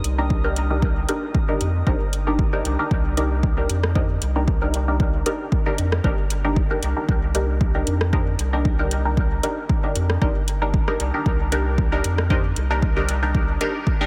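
A swung 4/4 pulse at 115 BPM drives this hazy, deep dub techno passage in C minor, built on a punchy, overdriven electronic kick up front and a deep house kit of metallic hi-hats and rim clicks soaked in dub echo, with a round sine sub bass pumping beneath. A muted, detuned chord stab with a phaser and dub echo carries the Cm9 harmony throughout, while a second, darker stab riff sits very quiet from 1.9 to 12.4 seconds. A glassy, chorused texture of drifting overtones floats in the background only until 2.9 seconds, all set in light digital ambience in this fragment of a longer piece.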